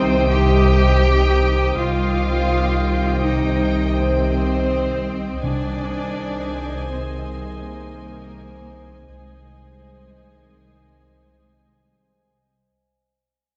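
In free time, this tense, ominous cinematic fragment, cut from a longer piece, fades out across its 12.7 seconds: veiled, con sordino violin sections carry a distant melody and a second line over muted violas, cellos and a double bass section, while a glassy, ethereal glass harmonica, mellow French horns and bright trombones hold chords above a deep, saturated sub bass drone; a high violin texture drops out at 5.0 seconds, and a round, soft-mallet timpani stroke at 5.4 seconds marks the shift from Cmadd9 to Ab/C, all washed in a wet concert-hall reverb.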